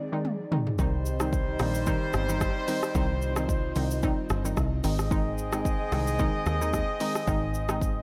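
A dry, close-sounding excerpt of sultry, smooth afrobeats at 111 BPM in C minor with a gentle sixteenth-note swing: a hollow, bouncy square-wave pluck with chorus and a mellow, breathy pad in the background open on Ab, a deep house drum kit with a deep kick and dark hats enters with a fill at 0.2 seconds, and at 0.8 seconds an overdriven, round, punchy picked electric bass and a tight pop-style horn section with light vibrato and delay arrive up front as the harmony moves to C minor.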